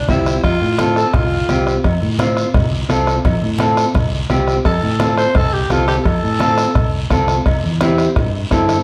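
A roomy, reverberant mix heard from further back frames this joyful, danceable cumbia in F major at 171 BPM, where a growling, breathy tenor saxophone solos up front in short bursts from 0.0 and 4.7 seconds over a dark, clean electric guitar, a round, punchy fingered bass, a dry, soft-beater bombo, very quiet congas, ringing cowbell and timbales in the background, and a raspy, distant guiro, with the harmony moving from F to C at 7.5 seconds in this fragment of a longer piece.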